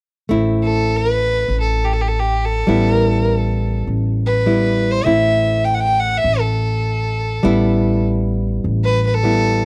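Unfolding in free time, this short klezmer passage, cut from a longer piece, carries a bittersweet, soulful mood. A fingerpicked nylon-string guitar with a bright, small tone and a pizzicato upright bass with woody steel strings both begin at 0.3 seconds, the bass holding a low A up front. A single bowed violin enters at 0.6 seconds with the melody, its clear, earthy voice touched by light vibrato and placed up front in the mix. Underneath, the harmony moves between A minor and E minor over an A bass. The sound is that of a dry, close 1970s-style studio.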